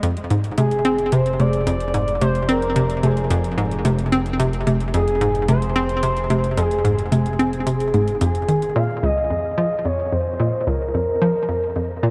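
Ambient, sequencer-driven space music with an expansive, mysterious mood, in a steady, straight four-beat pulse, cut from a longer piece. A hollow, bouncy square-wave pluck carries the riff throughout, sitting bright and up front with a detuned edge, a snap of fast attack and short decay, and chorus and delay trailing each note. A booming analog drum machine adds dry toms and metallic hi-hats with echoes of delay, then drops out at 8.7 seconds, just as the harmony shifts at 8.8 seconds. Above it, an expressive sawtooth lead sings the melody with smooth portamento glides, vibrato and a dark tone, thickened by lush chorus and delay. From 10.5 seconds, a breathy, wind-like tuned noise texture slips in very quietly, and a huge, wet reverb bathes the whole scene in a vast sense of space.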